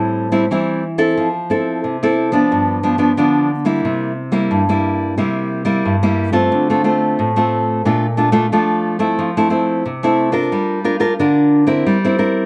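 A straight 4/4 samba pulse at 90 BPM drives this brief, playful fragment in F major, cut from a longer piece. A fingerpicked nylon-string guitar carries everything as the solo voice, sitting up front with an acoustic, classical tone and ranging from G2 to Bb4. The joyful harmony moves through Am7, Fmaj7, G7 and C7, then turns toward Dm7 at 6.5 seconds and Bbmaj7, before settling on Gm7 and a C7/G that leaves the phrase open at 12.5 seconds. A moderate studio reverb gives the guitar a short, natural bloom around its notes.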